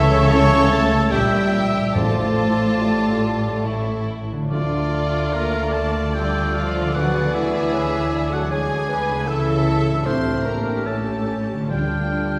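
In a slow, rubato triple metre, this melancholic, solemn romantic orchestral movement unfolds over a short stretch cut from a longer piece, its harmony circling between minor and dominant chords before settling back on D minor near 11.7 seconds. A focused, vibrato-rich violin section carries the melody, while a second, richer violin section sings higher above it, joined by an airy, distant flute, a dark, roomy clarinet and a smooth-topped cor anglais weaving second lines. Beneath them a smooth, even viola section and a mellow bassoon fill in the accompaniment, and a close-miked French horn section holds mellow sustained chords. The bass rests on an intense bowed double bass section and an expressive cello section with soft attacks and portamento, while a very quiet concert harp rings out arpeggios. From about 2.0 seconds, timpani struck with soft mallets add a round, faint undertone. The orchestra sounds set back in a reverberant scoring stage, giving the whole a spacious, distant glow.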